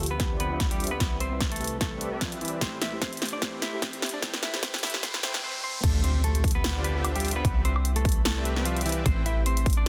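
This lush, bittersweet future bass excerpt at 149 BPM, felt in half-time with a light swing, opens on a clean, hollow-bodied electric guitar melody that pumps with the beat through a low-pass filter and delay. Beneath it sit a dark, round pluck, a very quiet breathy pad, a deep, boomy 808-style bass with tube saturation, and a punchy, up-front dance kit of crash, hi-hat, snare and woodblock. A layered electronic kick and a smooth, detuned supersaw riff under a filter sweep join within the first second as a drum fill and a faint riser drive the build-up, and the pluck stops at 5.4 seconds before the drop lands with an impact at 5.8 seconds, cycling through Dm11, Cmaj7 and Am7 under light reverb and a dense, heavily limited master.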